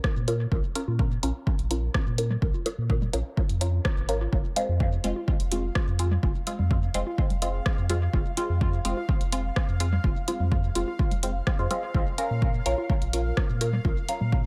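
This deep, hazy dub techno fragment opens with a muted, nasal sawtooth chord stab under a filter sweep, phaser, sidechain pumping and dub echo, together with an overdriven, punchy kick up front, an overdriven analog drum machine's hi-hat and rim click re-recorded in a large room, and tape-warm congas in the background, while a round sine sub bass enters at 0.2 s and a bright, resonant bubbling texture with chorus and reverb arrives at 5.0 s, the mix floating in an echo-heavy digital ambience.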